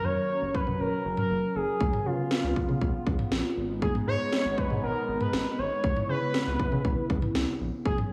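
Soaked in plate reverb with a dreamy, small-room ambience, this nocturnal, melancholic synth-pop excerpt at 119 BPM moves through F#, C#7, G#m and C#m7 as a smooth, expressive sawtooth lead with vibrato, portamento, chorus and analog delay sings up front over a swirling, detuned pad treated with phaser and chorus and a round, deep analog bass tinged by ring modulation, while an overdriven house drum kit with punchy kick, cracking snare and toms enters at 0.5 s.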